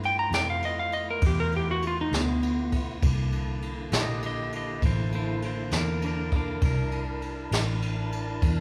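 This slow blues in 12/8 has a rollicking yet laid-back mood, and it is cut from a longer piece. A clean lap steel guitar carries the melody from 0.1 seconds, sitting up front with a dark tone, played with fingerpicks and slide, and shaped by volume swells. Beneath it, a tonewheel organ holds fat sustained chords, with vibrato, key click and a slow rotary speaker. A vintage fingered electric bass gives a round, foam-muted, amped bottom end, while a jazz kit played with brushes adds boomy kick, a medium-tuned snare and dark ride cymbal from a mid-forward spot with a rolled-off top. The harmony moves from a rootless G13 to C13 at 3.0 seconds, and the whole performance sits in the wet reverb of a church or concert hall.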